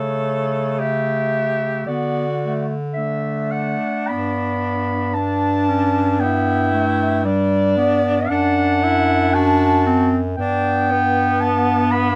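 From the first second, a dark, distant clarinet sings the melody up front while a bright alto saxophone adds a smooth, vibrato-tinged second line, a close-miked clarinet supplies clear accompaniment and a bass clarinet, also up front, anchors the bass in this elegiac, solemn classical piece for reed quartet, played at a rubato 57 BPM in D major with light reverb, as the harmony moves from A7/C# through D and G to D7/F# and back to G across a 12.2-second passage cut from a longer work.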